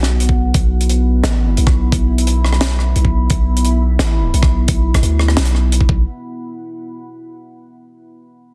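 A half-time drum and bass groove sets a spacious, tense mood in this short cut from a longer piece: a tight, natural-sounding funk kit of hi-hat, rim click and high-tuned snare plays in a small room, an overdriven, knocking electronic kick sits up front from 0.3 s, a deep, mellow sine-like 808-style bass holds long decaying notes, and a dark, moody sawtooth-and-sine ambient pad with ring modulation, wave-folding, chorus, reverb and sidechain pumping sustains a B chord until 6.0 s, all under a dense, heavily limited modern master.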